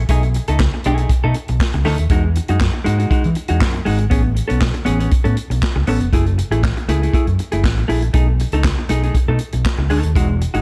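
Disco at 119 BPM in a straight 4/4, this short cut from a longer piece has a sultry, danceable mood. A vintage acoustic drum kit drives the groove with a punchy kick, a medium-tuned snare, hi-hat and handclaps, its rolled-off top giving a natural studio-room sound. An overdriven, fingered electric bass sits up front, its amped tone both warm and punchy as it moves through the low register. A dark, clean semi-hollow electric guitar supplies picked, compressed accompaniment from the opening at 0.0 seconds, with its hollow-body character clearly audible. The harmony moves through lush extended chords, B13, Emaj9, Amaj9 and F#m9, before returning to B13 at 8.1 seconds, all in a dry, close sound with little reverb.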